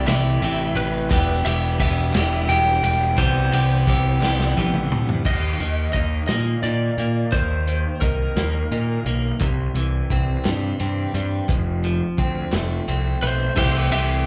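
A twangy, slightly broken-up lead guitar with slapback echo and analog delay carries the melody from the first moment, over an up-front clean electric guitar riff dressed in lush chorus and a punchy, fuzzed-out picked bass, in this upbeat yet wistful indie rock piece moving in 6/8 at 58 BPM. A muffled, lo-fi vintage drum kit with dark cymbals and a tight kick plays a fill at 4.2 seconds as the chords shift toward Eb5, while crisp group handclaps sit in the background. The lead guitar drops out at 9.0 seconds and returns at 13.2 seconds, and the whole performance sounds like a live club gig heard through the venue's PA.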